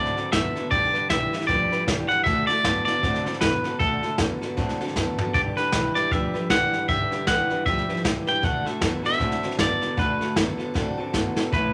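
A bright, clean, twangy electric guitar sits up front with the picked melody in this rollicking, upbeat rockabilly piece, cut from a longer performance at 155 BPM in 4/4 with a swung eighth-note feel in D mixolydian. Beneath it, a second electric guitar through a small old amp plays a low riff with a slightly broken-up edge, while a picked acoustic archtop guitar with old strings adds a boxy, woody accompaniment. An upright bass, plucked on gut strings, sits very quiet and thumpy at the bottom. A jazz kit played with brushes is also up front, pairing a medium-tuned snare with a boomy kick, hi-hat and toms, and it breaks into fills at 5.0 and 10.7 seconds. The harmony moves between D and G, and a moderate large studio reverb gives the whole band a sense of room.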